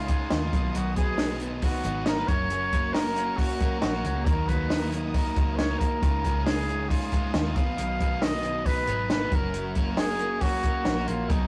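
A bucket-muted trumpet leads this breezy, youthful slice of jangly indie pop, its veiled, forceful tone carrying the melody up front with light vibrato and a touch of digital delay. Underneath, a crunchy overdriven guitar picks out the accompaniment while a twangy, slightly broken-up electric guitar through a small old amp picks arpeggios. A foam-muted picked electric bass gives a round, punchy low end, and a compact cocktail drum kit plays hi-hat, kick and snare from 0.1 seconds, with a high-tuned snare and a dark, rolled-off top. Very quietly in the background, a studio string section sustains chords with vibrato and portamento. The tempo sits at 137 BPM in a straight 4/4, cycling through Dbadd9, Cb, Gb and Ebm. The sound has the rough, saturated character of a rehearsal-room recording with a moderate small-room reverb, and the clip is cut from a longer piece.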